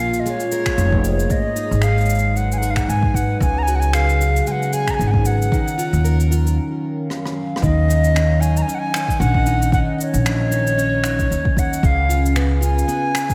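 Folktronica at 114 BPM with a gentle 16th-note swing, this delicate, intimate excerpt pairs an airy, close-miked wooden flute melody carrying delay with a warbly, lo-fi detuned pad and a boxy picked steel-string acoustic guitar whose arpeggios carry subtle chorus, delay and finger squeak. A growly pizzicato upright bass sits up front alongside a soft, tape-warm electronic kick that arrives at 0.7 seconds, while cabasa, finger snaps and brushed rim clicks add light texture. A brief break from 6.6 seconds ends in a drum fill that leads into a new section at 7.6 seconds, with chords moving through minor sevenths and ninths to a closing C#7, all bathed in a dreamy hall reverb.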